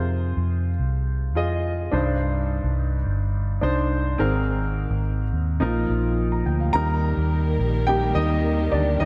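A clear, natural baby grand piano with analog chorus opens this hopeful, anthemic pop excerpt at 106 BPM in Eb major, joined from the start by a dark, round, foam-muted electric bass placed up front as the chords move from Fm through Cmadd9 and Abadd9 to Bbsus4. At 6.7 seconds the piano steps forward for a solo, and at 6.8 seconds a studio string section enters quietly with soft-attack, sul tasto sustained chords and light vibrato. The whole mix floats in a lush hall reverb, giving it a dreamy glow.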